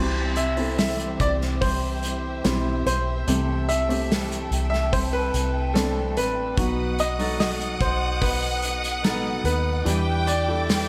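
A big, arena-sized sound wraps this melancholic, heartbroken pop ballad fragment in moderate concert-hall reverb with a touch of small-room ambience. A clear, smooth grand piano carries the melody with a slapback echo, while a soft, felt-muted upright piano adds intimate, mellow accompaniment beneath it, also with slapback echo. A fingerpicked steel-string acoustic guitar plays arpeggios in the background, treated with slapback echo and delay. A distant, lush string section holds sustained, vibrato-rich chords, and a dark, round, foam-muted electric bass sits up front. A loose indie drum kit with a tight kick, a medium-tuned snare, hi-hat and a pumping room sound enters at 0.4 seconds, and a biting, clear violin section adds a second line from 6.6 seconds over a progression moving through C, Am7/C, B and Em7.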